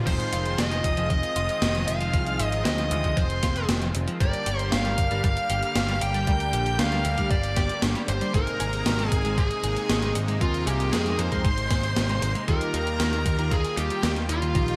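A dark, distorted lead guitar with a bluesy edge and delay carries the melody up front in this nostalgic, cinematic synthwave excerpt at 116 BPM in F dorian, moving through Fm7, Gm, Abadd9 and Ebadd9. Beneath it, a punchy picked bass and a thumpy electronic kick drive the straight 4/4, joined by a gated 80s drum machine with crash, hi-hat and a gated-reverb snare. A smooth supersaw pumps with sidechain under round, chorused synth-brass stabs with a cassette-tape tint, shimmering string-machine violins, and a very quiet clean guitar riff, all set in a bright 1980s-style digital mix with plate reverb.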